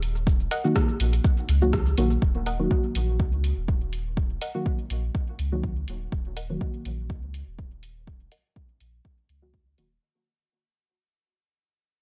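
A soft, nasal, full-bodied chord stab with chorus, phaser, sidechain pumping and dub echo leads this nocturnal, deep dub techno excerpt, over a clean, smooth sine sub bass that also pumps, a deep overdriven electronic kick entering at 0.3 seconds, a deep house kit of cabasa, metallic hi-hat and rim click with overdrive and dub echo, and a muted, mellow filtered chord-stab riff from 0.5 seconds, while a filter sweep on the synth stab and a fade-out run from 2.2 seconds in a dry, gritty hardware recording.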